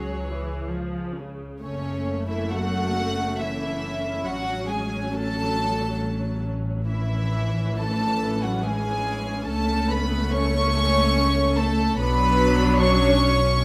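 Classical slow romantic movement for string orchestra in F# minor, solemn and elegiac at 69 BPM in a rubato 3/4, where an up-front violin section carries a pure, floating sul tasto melody over a second violin line, with dark, woody viola accompaniment with vibrato, soft-attack cellos and an intimate, close double bass section, all bowed in a moderate scoring-stage reverb as the harmony moves from C#sus4 through F#m and A toward Bm.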